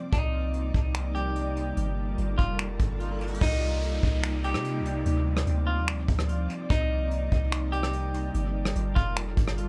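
A deep, round 808-style bass sits up front with a soft, dark brush drum kit of punchy kick, hi-hat, rim click and finger snaps in this hazy, spacious half-time cloud-rap hip hop excerpt, while an ethereal, detuned pad holds sustained chords through chorus, built-in reverb and sidechain pumping, a clean, picked electric guitar carries a low-pass-filtered melody trailed by dub echo, and an electronic riser and downlifter appear between 2.7 and 6.7 s.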